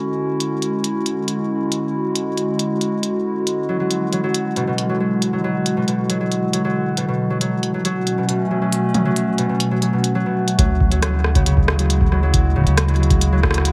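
Glitchy and intricate, this IDM excerpt moves at 137 BPM in D lydian, opening on a warbling, nostalgic pad whose detuned, lo-fi chords carry chorus and reverb, joined almost at once by a glitchy kit of clicky hi-hats, rim clicks and toms with a small-room sound. From 3.7 seconds a fingerpicked concert harp rings out delayed arpeggios over chords moving from Dmaj9#11 through E9 and A69. At 10.6 seconds the chords return to Dmaj9#11 as a rubbery, hollow square bass holding D2 and a deep, tape-warm analog kick enter to give the closing stretch more weight, all in light reverb.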